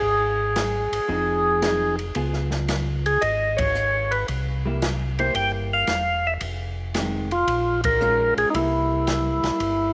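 This bluesy, soulful soul jazz organ trio excerpt opens with two tonewheel organs at once. An up-front, percussive organ carries the melody with key click and second-harmonic percussion through a slow rotary speaker, while a mellow, round organ holds down the bass line with chorus vibrato and its own slow rotary spin. An acoustic jazz kit enters at 0.6 seconds with a boomy kick, a medium-tuned snare, hi-hat and ride, sounding smooth and rolled-off at the top in a small room. A vintage hollow-body electric guitar joins at 1.1 seconds, adding a dark, clean, picked, compressed accompaniment. The swung groove moves through a minor blues-flavoured progression, and the whole band hits two accents along the way, all set in light reverb and studio ambience.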